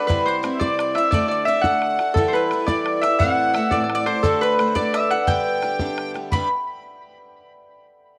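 Celtic folk jig in G major at 115 BPM in 6/8, rollicking and cheerful, cut from a longer piece, where a ringing, fingerpicked Celtic harp carries the melody up front while a reedy accordion with light tremolo tuning and tape echo and a bright, double-strung bowl-back mandolin add second lines in the background, a boxy picked steel-string guitar accompanies through C, D, Em, Am, D and G, a tight, dry bodhran drives the beat from 0.1 seconds, and light reverb adds space until the harp rings alone to 6.7 seconds.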